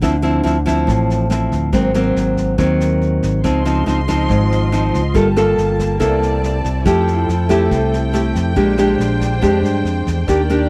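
A dry, close recording in a 1970s studio style opens this sophisticated, relaxed bossa nova fragment at 140 BPM in 4/4, with an up-front fingerpicked nylon-string guitar carrying the accompaniment over a dark, round fingered electric bass and a vintage brush kit of punchy kick, rim click and medium-tuned snare. At 3.4 seconds a warm string section enters with smooth, bowed sul tasto chords and vibrato. The harmony moves through rich extended chords, from Dm9 and Ab9 to Dbmaj9, Gm9, C13, Fmaj9 and Bb13.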